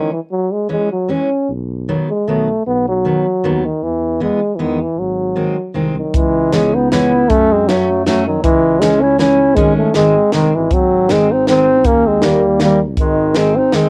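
Alpine folk in a jolly, bouncy dance-band style, set in a swung 3/4 at 156 BPM and cut from a longer piece. A euphonium with light vibrato carries the melody up front in a classical manner, its tone colored by cassette tape, over a full-bodied, fingerpicked jumbo steel-string acoustic guitar that plays the accompaniment, also placed up front. A dark, smooth-topped tuba enters at 1.5 s with the bass line, given a gentle glow of tube saturation. At 6.0 s a warm, classical-style clarinet adds a second line. A compact cocktail kit follows at 6.1 s, where the tune settles into C# harmonic minor; its dry hi-hat, high-tuned snare and punchy kick also carry a cassette grain. The home cassette recording sits in light reverb, and the harmony moves from C#m through F#m and G#sus4 to close on G#.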